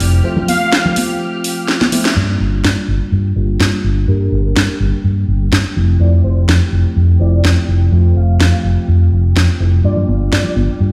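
Filtered disco house at 125 BPM in G dorian, this groovy, sensual fragment of a longer piece moves between Fmaj7 and Gm7 chords. It opens on a break from 0.2 seconds, with a drum fill from 1.7 seconds and a band accent at 2.0 seconds before a filter sweep runs from 2.2 seconds to the end. Up front, a round, hollow-body fingered electric bass with tube saturation anchors the low end, while a house drum kit with a cracking snare and overdriven, bright hats adds studio ambience. Tambourine and congas played with soft hands sit in the background, appearing only at the start and again from 9.8 seconds. A bright tine electric piano carries the accompaniment with phaser and sampler grit, as a distant, lush violin section holds bowed chords with vibrato behind it. From 0.5 seconds a fat, brassy analog synth brass lead with detuned sawtooth warble, chorus and delay takes the melody, all heard as if on a big sound system in a bare stone room.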